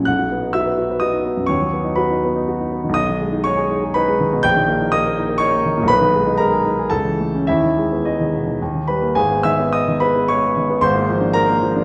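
A present, polished grand piano sits up front in this brooding, passionate romantic character piece in G# minor, played solo in 3/4 with rubato between 103 and 127 BPM, tuned to A4 = 437 Hz and ranging from G#1 to G6 in a wet recital-hall reverb and dark production, moving from B and B/D# through D#7/A# to a new section on G#m at 9.2 s before this 11.8-second passage, cut from a longer work, closes on A#7/G#.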